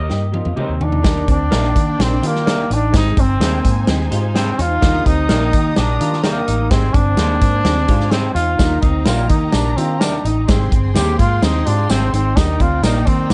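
A straight 4/4 groove at 127 BPM drives this uptempo 1960s-style soul excerpt in Eb major, uplifting and joyful from the start. A drum fill from a natural, punchy country kit that sits up front marks the opening second. A round, foam-muted fingered bass anchors the low end while a breathy trumpet carries the melody, its intimate jazz-style solo full of vibrato, scooped notes and soft attacks, bathed in plate reverb. Two slightly broken-up guitars through a small old amp fill the middle in the background: one plays a lo-fi riff with ensemble chorus, and the other adds twangy stabs treated with spring reverb and tape echo. A boxy grand piano with short sustain supplies accompaniment, and a lush, woody violin section bowed sul tasto enters at 1.0 seconds as a distant second line. A jingly tambourine joins at 8.6 seconds as the harmony moves between Ebmaj7 and Abmaj7 in a dark mix with light reverb.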